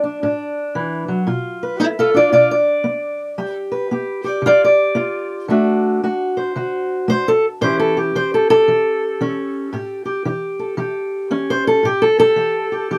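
Acoustic country blues with a swaggering, laid-back mood at 113 BPM in a swung 4/4 in D major, where a lone fingerpicked steel-string parlour guitar with dark, woody, boxy old strings sits up front in a moderate booth ambience, playing alone from 0.0 to 13.0 seconds through D, G7, D7 and A7 in this short cut from a longer piece.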